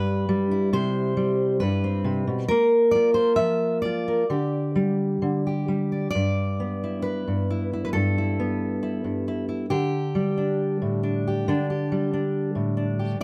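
A fingerpicked steel-string dreadnought guitar sits up front and plays alone through this short folk excerpt, its old strings giving a dark, woody voice across a range from G2 to E5. The mood is nostalgic and warm, moving at a loose, rubato 68 BPM in 4/4 and centred in G major. The harmony drifts from C to Bb5 and Dsus4 before a new passage opens at 6.1 seconds on G6, returning to Dsus4 at 9.7 seconds. A moderate studio reverb with a 0.6-second tail gives the guitar a gentle sense of room. The clip runs 13.2 seconds, a brief slice lifted from a longer piece.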